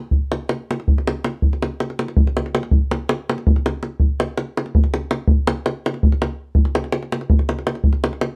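Virtuosic and fiery, this brief cut from a longer Balkan folk piece drives forward in a straight 7/8 at 327 BPM counted in eighths. The davul carries the whole passage alone, entering at 0.1 s and playing through to 8.3 s. Its acoustic sound is tight and close, placed up front in the mix. A light reverb gives the drum a touch of room around it. The asymmetric metre and brisk pulse keep the energy high across this short stretch.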